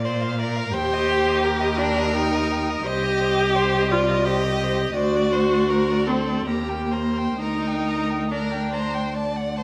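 A resonant recital-hall reverb surrounds this brief, yearning excerpt of a slow, melancholic romantic movement for string quartet in G minor, moving in a rubato 3/4 at roughly 62-89 BPM. A distant first violin sings the melody with vibrato and expressive portamento over a focused second violin line, while an up-front viola, entering at 0.7 seconds, carries the accompaniment with gliding, expressive phrasing. Beneath them, a close, soft-attacked cello holds the bass, its rich vibrato shaping a progression that passes through C minor and D7 before settling toward G minor.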